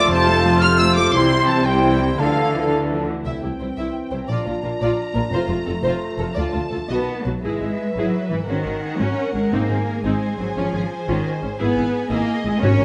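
This cinematic excerpt opens mid-phrase on a triumphant, soaring orchestral tutti in 6/8 at 116 BPM (dotted quarters), set in C mixolydian. Distant, lush symphonic violins carry the melody. A darker, woody studio violin section with a soft attack adds a second line beneath them, while an airy flute, a shadowy, roomy cor anglais and a smooth-topped clarinet sound very quietly in the opening bars. Violas fill in the accompaniment from the background, and an expressive cello section sits up front with a focused double bass section to form the warm bowed low end. A mellow French horn section and vintage-toned, tight trombones hold sustained chords, and a mellow trumpet with light vibrato adds background stabs. The woodwinds, horns and trumpet drop out by 3.1 s and the trombones by 7.3 s, leaving the strings to move through chromatic harmonies such as E/G#, Gb/Ab and Db/Ab in a moderate recital-hall reverb. 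Round, soft-mallet timpani strokes arrive at 9.5 s and again at the very end.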